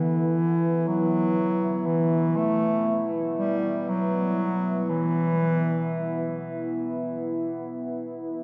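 A mellow, smooth-topped bass clarinet plays a solo melody in a classical style with tape echo, sitting up front until it stops at 6.4 seconds. Alongside it, a deep, moody ambient pad of detuned sawtooth and sine layers with a sub octave holds slow-attack chords with chorus, lingering alone until 8.4 seconds. This dark, desolate ambient fragment in free time, cut from a longer piece, floats in a cavernous cathedral reverb with a 7.0-second decay, its worn cassette sound warbling with pitch drift and a dull, muffled top.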